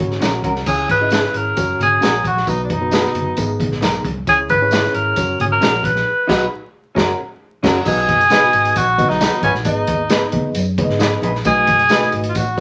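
This danceable slice of uptempo 1960s-style soul opens with a reedy electric piano pulsing with fast tremolo through its built-in speakers. Beneath it sit a dark, foam-muted fingered bass with a round, punchy tone, a crunchy breakbeat kit with a tight kick, dark cymbals and a gritty, rolled-off top, and very quiet, low-tuned congas played with soft hands. An electric guitar through a small old amp soon adds lo-fi, slightly broken-up stabs, while a jingly tambourine sits close and dry in the background. At 0.7 seconds a tenor saxophone takes the melody up front, its soft attack, vibrato and vintage jazz-style tone giving the tune a warm glow. The band hits a shared accent from 6.1 seconds before the harmony shifts into a new passage at 7.9 seconds, arriving on a B7 chord near the end, all set in a wet studio ambience laced with vinyl crackle.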